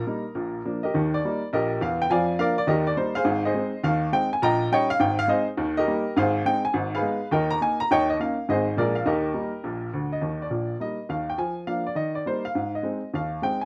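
A clear, woody upright piano plays solo stride jazz up front in this exuberant, swinging excerpt, its smooth, vintage tone touched by slapback echo and light reverb in a dry open-air recording, as chords such as Ab6 and Abm color two passes through the same section before the music is cut at 13.7 seconds.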